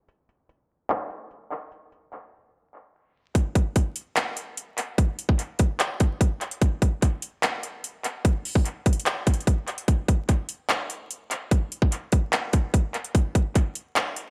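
A half-time trap groove in 4/4 at 147 BPM drives this short hip hop fragment, its drum kit of kick drum, hi-hat and handclaps entering at 0.1 seconds and running to the end. The mood is melancholic and menacing, carried entirely by these electronic, produced drums, which sit up front with a hard-clipped kick and metallic hats. Overdrive and tape echo colour the kit, and it sounds as though it was re-recorded in a small room. The opening passage is shaped by a filter sweep, with a break from 2.5 to 3.4 seconds before the main groove takes hold. The mix is dry of reverb yet heavy with echo, dusted with vinyl crackle and dulled by a low-pass filter.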